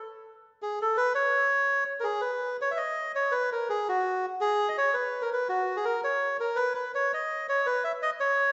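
Italian folk in a lively, sunny mood, this short cut from a longer piece moves in a loose, rubato 6/8 at 111 BPM in B major. A solo melodica sits up front from 0.6 to 8.5 seconds, its reedy, nasal tone carrying a breathy, plastic-cased edge and a slapback echo. The sound blooms in a wet recital hall reverb, with the top end rolled off above 7.8 kHz.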